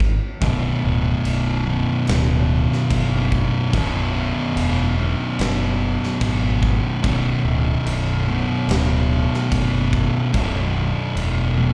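At a straight 72 BPM in 4/4, a big acoustic rock kit sets a heavy, ominous stoner and doom metal pulse with a tight kick, fat snare and crash cymbal in a bright stone room. A growling fingered electric bass plays alongside it from 0.0 s, sounding direct, amped and overdriven, with a bright edge low in its register. From 0.4 s, two thick fuzz guitars carry the riff in B minor over a Bm chord: one is dark, picked and up front, while the other sits in the background with slapback echo. A mellow tonewheel organ holds very quiet, round, clean sustained chords beneath them, with key click and a slowly turning rotary speaker. The whole passage feels like a live gig heard through a club PA and its reverb, and it runs 11.7 s as a cut from a longer piece.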